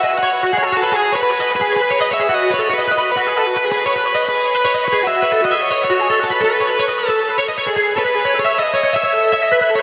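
A twangy, compressed twelve-string electric guitar sits up front, playing bright, clean picked arpeggios through an ensemble chorus and delay for the whole 9.8 seconds of this rock fragment, cut from a longer piece. Beside it, an overdriven electric guitar carries the melody with a warm, picked tone, treated with spring reverb and delay and placed just as far forward. The music moves at 307 BPM counted in eighths, in a straight 7/8 metre that gives it a bright, playful lilt. Chords such as F#madd9, G#madd11 and B7 cycle through the opening passage before the harmony shifts to Amaj9#11 at 7.8 seconds. A lush hall reverb with a long 3.3-second tail soaks the whole mix, lending it a dreamy, floating quality.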